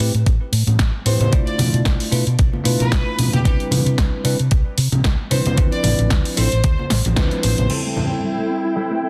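A thumpy, sampler-style electronic kick sits up front in this sleek, sensual nu-disco excerpt, with a tape-like character and studio reverb, alongside a layered house kit of punchy snare, warm hi-hats and crash cymbal. A dark, round hollow-body fingered bass anchors the groove, which carries a light swing on the 16ths. Bright congas sit distant in a large room, and a bell-like tine electric piano, heard as if through built-in speakers, plays the chords from Am7 through Cmaj9 and Dm9 with sidechain pumping, a low-pass filter and dub echo. From 1.1 seconds a rich, focused, close violin section carries the melody with vibrato and dub echo. After a band accent at 7.2 seconds, the passage turns at 7.7 seconds: dark, woody strings hold lush sustained chords with pumping, a soft round pluck plays background arpeggios with chorus, and a twangy clean guitar through an envelope filter plays a riff with 12-bit sampler grit and a filter sweep. 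The dense, heavily limited master sits in light digital ambience.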